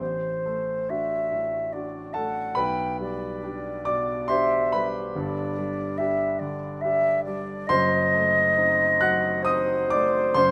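A mellow flute and a grand piano begin together, the flute's airy, straight-toned melody with its soft attack floating over the piano's deep bass and long, open sustain in an unhurried, rubato 3/4 at 70 BPM. This tender romantic classical duo in G major moves from D7/A through G/B and G to an F#dim7. Close, detailed microphones and a moderate stone-room reverb frame the 10.5-second passage, which is cut from a longer piece.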